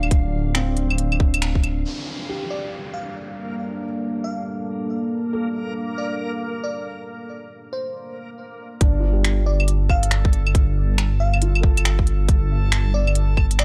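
A dry, gritty recording with a cassette-tape character frames this wistful, melancholic excerpt of future garage at 138 BPM in G minor, swung on the sixteenths. A felt-muted upright piano plays soft, intimate accompaniment in the background throughout, pumped by the sidechain and trailed by analog delay. A deep, moody ambient pad holds warbling, vintage chords with chorus and reverb, while a reversed, dreamy granular texture swells faintly underneath, over a Dm7 then Gm7 harmony. The opening groove pairs a tight, overdriven electronic kick with an up-front kit of claves, finger snaps and crisp hi-hats, anchored by a rumbling, detuned saw bass. As the beat drops away, a downlifter passes and a bell-like FM electric piano enters at 2.5 seconds with a sparkling, full-bodied melody through chorus, phaser and tape echo. After the pad stops at 7.9 seconds and a short break, the kick, kit and beating saturated bass return at 8.8 seconds over a G5 chord.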